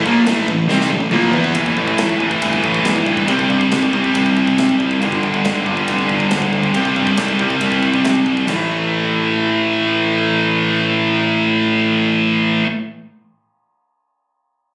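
Up-front, compressed distorted electric guitar and a bright high-gain guitar drive the riffs of this epic, aggressive heavy metal excerpt in A minor at 138 BPM, joined briefly by a double-tracked fuzz guitar in the background that stops at 1.6 seconds, while a growly overdriven bass sits underneath and a polished acoustic drum kit with a punchy kick and bright cymbals plays a fill before the power chords move through A5, C5 and G5, the drums dropping out at 8.6 seconds, all captured on a phone in a club-like room.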